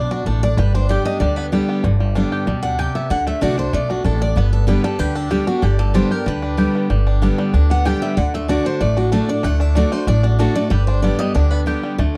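Bluegrass with a virtuosic, driving character, this short fragment moves between G and D chords under a dark production with light reverb. A bright, full-bodied picked dreadnought guitar carries the melody alongside a twangy, percussive fingerpicked banjo, with the guitar line dropping out at 11.6 seconds. Beneath them, a second picked steel-string guitar sits up front with warm accompaniment, while a woody, thumpy pizzicato upright bass anchors the low end.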